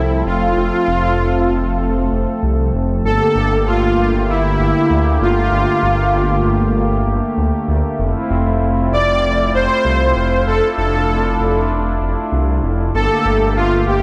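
This uplifting, nostalgic synthwave excerpt opens with all three parts sounding together: a soft supersaw carrying the melody, an analog pad holding sustained chords, and a detuned saw bass underneath. The supersaw lead is smooth and gently attacked, its unison sawtooth voices giving the tune a warm glow, with digital delay trailing each note. Beneath it, the pad is warm and vintage, warbling through chorus with a wave-folded edge that adds colour to its soft, sustained chords. The bass is thick and saturated yet mellow, its fast attack giving the low end definition while chorus broadens its detuned sawtooth and square tones. Set in a moderate plate reverb with bright 1980s-style digital production, the harmony drifts from F to Gmadd9 at 3.0 seconds, settles on Fmaj7 at 8.0 seconds, and returns to Gmadd9 near the end, leaving the passage open as it cuts away.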